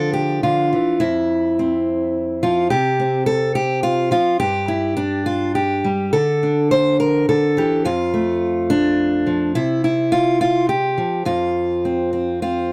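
A dry, close studio sound in a 1970s vein puts a single steel-string acoustic guitar up front, its fresh strings ringing bright with the occasional finger squeak audible. This is a pastoral, hopeful folk piece for solo fingerpicked guitar in F major, moving in 3/4 at around 106 BPM with a loose, rubato feel. The guitar spans from F2 up to C5 across the 12.7-second excerpt, which is cut from a longer performance. Its harmony drifts from Dm to F5 and Csus4, moves into a chordless stretch at 4.4 seconds, then continues through D5, F and Csus4 before settling on F5. The concert-style instrument and intimate recording give the playing a clear, unadorned presence.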